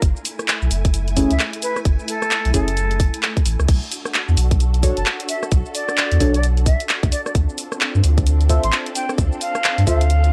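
A bouncy, moody two-step UK garage groove at 131 BPM with 16th-note swing drives this B minor excerpt, where a tight layered electronic kick and an up-front garage kit of handclaps, hi-hat, rim click, shaker and crash sit over a thick, saturated sub bass, while a silky string machine holds pumping, ensemble-chorused chords, dark chord stabs with phaser and tape echo enter at 1.2 seconds, and a distant, pure-toned concert flute with tape echo carries the melody from 1.3 seconds over F#m9, Bm9 and Dm9 in a dry, gritty cassette-tape sound.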